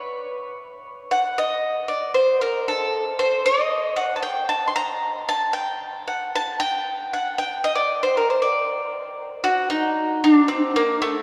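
A bowl-back mandolin opens alone, its picked double strings warm and up front as it plays a soulful, festive klezmer line in D phrygian dominant at 115 BPM in a straight 2/4. The solo ranges from A3 to C6 over about 11.2 seconds, moving after its opening moments into a longer passage that carries on to the cut. A wet cathedral reverb with a 5.0-second decay places the instrument in a vast, echoing space.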